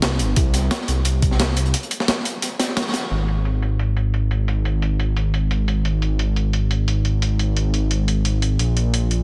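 Uplifting liquid drum and bass opens with a deep, rumbling detuned saw bass placed up front, its beating unison tone mellow yet sustained. Underneath it run two breakbeat kits: a compressed, pitched-up, gritty sampler-style kit with a medium-tuned snare and low-passed hats, and a crunchy, darker kit sitting in the background with a high-tuned snare and high-passed hats. The groove moves at 175 BPM in 4/4 with a slight swing on the sixteenths. An overdriven, knocking electronic kick enters at 0.4 s for a short stretch, and a break from 1.7 s carries a band accent at 2.8 s before the crunchy kit drops out at 3.0 s. From 3.1 s the remaining kit carries on under a filter sweep while the bass holds its low register. The whole is set in light reverb and mastered dense and heavily limited, giving this cut from a longer track a warm finish.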